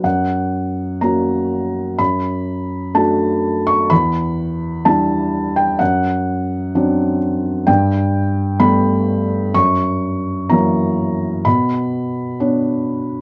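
Melancholic and dark, this lyrical classical solo piano passage drifts at 63 BPM with a rubato feel, a felt-muted upright piano playing alone across 13.2 seconds from E2 up to C#6, its thick felt giving a soft, mellow, intimate tone with audible action noise and an up-front presence. Chords move from F# through Em7, Gadd9 and F#7 before settling on Bmadd9. A moderate studio ambience surrounds it, and worn cassette tape adds a warbling pitch drift to this fragment cut from a longer piece.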